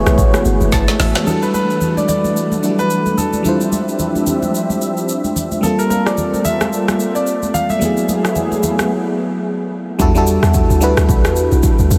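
This dreamy, reverb-soaked amapiano cut at 110 BPM carries a late-night, hypnotic mood, with a swung sixteenth feel and minor-eleventh chords drifting from F#m11 through Em11, Dm11 and Gm11. Glassy, bell-like FM electric piano with chorus and phaser and a smooth, detuned sawtooth pad with chorus and sidechain pumping hold the harmony, while a deep, round log drum bass, an up-front electronic drum kit with a woody snare, crisp hats, rim clicks and shaker, and bright, high-tuned congas drive the groove. A clear, polished concert grand piano carries the melody through an analog delay from 1.3 s to 9.7 s, an electric piano fill and drum fill lead into it, and a break at 8.9 s gives way to the log drum's return at 10.0 s.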